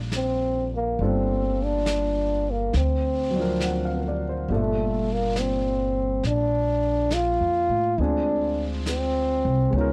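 A cup-muted trombone carries the melody in this melancholic, wistful jazz ballad excerpt, its veiled, breathy tone sitting up front from 0.2 seconds. Beneath it, a concert grand piano supplies intimate accompaniment with deep bass and audible action noise. An upright bass plays pizzicato with a woody, up-front sound. A vintage brush kit of snare and hi-hat has a rolled-off top and a small-room feel, entering at 0.1 seconds. The tune moves at a slow 69 BPM in 4/4 with a swung eighth-note feel in G minor, passing through Gm9, D7alt and Dm7b5, with a new section beginning at 4.5 seconds. The sound is dry and close, like a 1970s-style studio recording.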